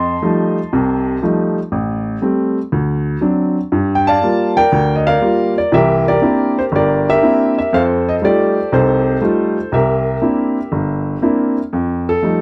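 Swinging and playful, this short solo jazz passage is cut from a longer piece and moves at 120 BPM in 4/4, with the eighth notes swung at 67%. A single upright piano carries everything from 0.0 to 12.4 seconds, ranging from G1 up to C6 and tuned to A4 = 439 Hz. Its tone is woody and natural, with long sustain and audible action noise that keep it intimate and up front. The harmony stays in F major, opening on F9 and moving through Am7, D7, Gm7 and C9, returning to F9 at 7.7 seconds, then passing through C9 before settling back on F9 at 11.7 seconds. The sound is dry and close, in the manner of a 1970s studio recording, with a small room ambience around the instrument.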